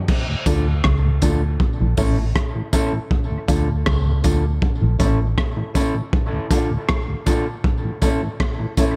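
A crunchy, gritty breakbeat kit opens this spacious, heavy dub reggae excerpt at 79 BPM, its tight kick, rim clicks, hi-hat and dark crash sitting up front, soon joined by a round, slow-rotary tonewheel organ with chorus vibrato in the background, a clean, fingered electric guitar trailing dub echo, a faint tambourine also steeped in echo, and a foam-muted, amped fingered bass that anchors the Dm-to-A vamp in D harmonic minor until it drops out at 5.3 s, within a small, echo-heavy room mix.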